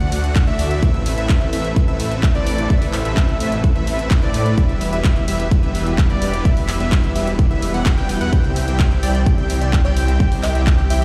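A straight pulse drives this euphoric, emotional festival progressive house passage, where a punchy, tape-warm electronic kick sits up front from 0.4 s beside overdriven handclaps and hi-hat, while a thick chorused saw bass pumps with the sidechain beneath huge bright supersaw chords and a bold, mellow unison lead arpeggio that also pump with the sidechain and trail digital delay, very quiet bowed symphonic strings hold clear sustained chords beneath, and a catchy square-wave plucky lead with a moving notch slips into the background at 9.0 s, all of it heard through a big sound system in a bare stone room.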